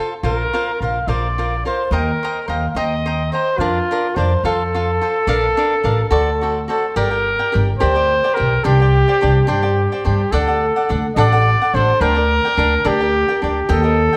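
A crisp, picked cavaquinho opens this short passage of mariachi-flavored Mexican folk music, joined almost at once by a pizzicato upright bass with a woody, growly low end. A mellow trumpet follows a moment later and carries the melody in a classical style, its light vibrato giving the tune a romantic, singing quality. Moving in a lilting 6/8, the three parts blend into a mood that feels both tender and festive, with the bright cavaquinho and dark steel-stringed bass sitting close in the mix. At 7.0 s the music turns to a second section with a more shadowed, plaintive harmonic color before the excerpt is cut off. A moderate recital-hall reverb surrounds the ensemble, lending the trumpet a distant, roomy glow.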